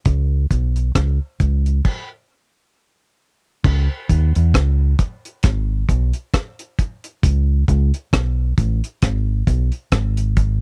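Deep fingered electric bass and a reggae drum kit come in together at 0.1 s, opening this hypnotic, spacious dub reggae excerpt at a slow 67 BPM in 4/4, with a 16th-note swing. The bass is dark, round and punchy, amped and direct, sitting up front and moving between G#1 and E2. The acoustic kit is dry and also up front, built from a tight kick, hi-hat, rim click and crash cymbal, with a cassette-tape coloring on the drums. A stop interrupts the music from 1.9 s to 3.6 s, after which a new section carries the groove through to 10.6 s. The sound is that of a home recording on cassette, with little reverb, so the empty spaces in the groove feel bare and open.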